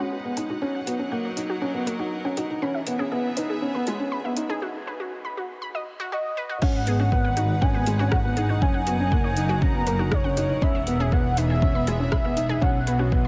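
A straight, steady pulse drives this hypnotic, intimate piano-and-strings electronica, cut from a longer piece, with an overdriven deep house kit of metallic hats, crash cymbal and rim click ticking along from the opening moments. A felt-muted upright piano sits up front with a soft, mellow riff, its thick felt and audible action noise giving it a close, private feel. Behind it, a clear, biting string section holds sustained chords while a lush, punchy unison pluck spins bright, detuned arpeggios. The strings and pluck both pump against the sidechain and shimmer with reverb, and a filter sweeps across the pluck through the build-up before a short break at 4.6 seconds. A velvety, chorused synth lead enters with a smooth melody at 6.1 seconds, and at 6.6 seconds the drop lands with a deep, overdriven electronic kick and a dark, bowed double bass section that slides with portamento beneath the cycle of G#m7, F#6, E and B chords.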